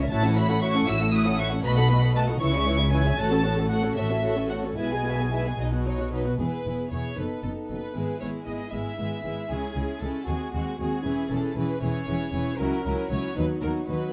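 This is a quick, classical-period movement for string orchestra in 6/8, cut from a longer piece, with a lively, cheerful mood. Every section plays sul tasto. The melody floats high in a violin section with a pure, distant tone, while a second violin line sits close and intimate with a light vibrato. Violas fill the accompaniment with a rich, soft-attacked sound. Beneath them, cellos lie warmly in the background, and the double basses add a woody, dark foundation with vibrato. A moderate studio reverb rounds off the ensemble, and the music moves into a new section at 6.4 seconds.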